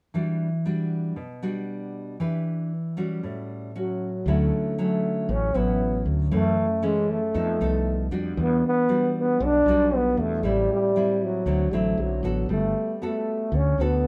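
Sunny and sophisticated, this bossa nova excerpt at 117 BPM in D major opens with fingerpicked nylon-string guitar accompaniment over jazzy chords such as Em9, Dmaj9 and F7#11, before a dark, breathy trombone with light vibrato takes the whispered, intimate melody at 3.8 seconds and a growly, direct fretless electric bass enters at 4.3 seconds, all heard as a band playing live in one room with a wet studio reverb.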